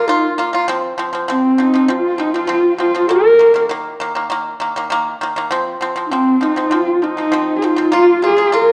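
A straight 4/4 pulse at 99 BPM carries this vast, solemn Mongolian folk excerpt in F yu mode, cut from a longer piece and cycling through Bb5, F5, Eb5, F5 and back to Bb5 over its 8.7 seconds. Up front, a dark, husky horsehead fiddle bows the melody with vibrato and portamento alongside a dry, percussive pipa picking arpeggios, while a mellow low xiao traces an airy, soft-attacked second line in the background. A recital hall reverb surrounds the ensemble, and a worn cassette-tape quality adds warbling pitch drift.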